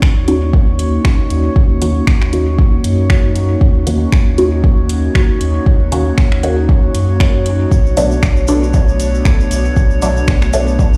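Swung sixteenths ride an overdriven, up-front electronic kick and a gritty deep house kit of finger snaps and hi-hat with dub echo in this hazy, nocturnal dub techno fragment, where a round sub bass, muted phased chord stabs trailing dub echo, an airy, breathy chorused pad and a glassy, drifting harmonic texture all pump against the kick, a grainy tube shaker joins at 7.7 s as the harmony moves from Ebm7 to Bm7, and the whole mix sounds as if played on a big sound system in a bare stone room.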